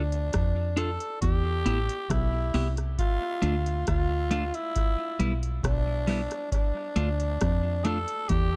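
A growling, raspy tenor saxophone carries the melody with light vibrato and tape echo over a round, foam-muted dub bass from the start, joined by a booming analog drum machine with deep kick, metallic hats and rim clicks carrying dub echo, and from 0.8 seconds a clean, picked, compressed electric guitar with its own tape echo, giving this laid-back, serious roots reggae fragment, cut from a longer piece and moving between Dm and Em, a dark, warm production in digital ambience.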